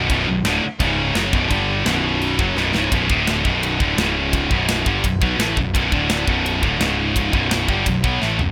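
This rough home demo mix carries a light reverb, and this short cut from a longer heavy metal piece has a dark, aggressive mood in a straight four-beat feel. Up front, a searing high-gain electric guitar drives the riff throughout, doubled by a very quiet double-tracked high-gain guitar that drops out at 2.9 seconds and by a faint, tight distorted guitar. Underneath, a fuzz-soaked electric bass, direct and amped, adds punchy low-end grit. An acoustic metal kit sounds polished and airy in a big room, with bright cymbals, a medium-tuned snare and a tight kick, and it marks the end of each section with a drum fill, the last beginning at 8.2 seconds. The riff circles Bm with C#5, G5, B5 and D5 power chords, shifting from its opening section to a second one that holds until the cut.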